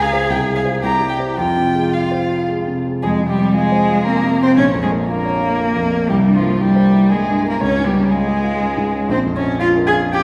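Heard in a church or concert hall, this short cut from a longer piece carries a long, wet reverb that lingers around the players. It is a quick classical-period movement for piano trio in F minor, in 3/4 at 108 to 122 BPM with a rubato feel, tuned to A4 = 439 Hz, and its mood is urgent and restless. The bowed cello sits up front and is the loudest voice, rich and focused with vibrato as it carries the second line. The violin leads the melody above it, softer in level, with vibrato, a gentle attack, portamento and an expressive warmth. A dark, mellow baby grand piano, also up front, supplies the accompaniment with long sustain from the low bass to the middle register. The harmony moves from Fm/C and C7 to Fm, and after a new section begins at 3.0 s it turns through Bbm, C7 and Db before returning to Bbm at 9.1 s.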